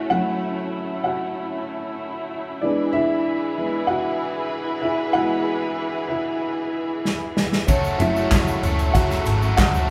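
This is a piece of piano-driven pop in F# minor at 95 BPM, with a driving yet bittersweet mood, cut from a longer piece. A dark, woody upright piano sits up front with a long sustain, carrying the lead over a muted string section whose veiled, con sordino chords hang distant and lush with vibrato. The harmony moves from F# minor to E before returning to F# minor. At 7.1 seconds an acoustic drum kit played with bundle sticks breaks in with a fill, bringing a punchy kick, a medium-tuned snare, toms, ride cymbal and handclaps. At 7.7 seconds a crunchy, double-tracked overdriven guitar riff arrives along with a round, foam-muted picked electric bass in the background and a grainy egg shaker. The band sounds like it is playing live in one room, framed by a moderate large studio reverb.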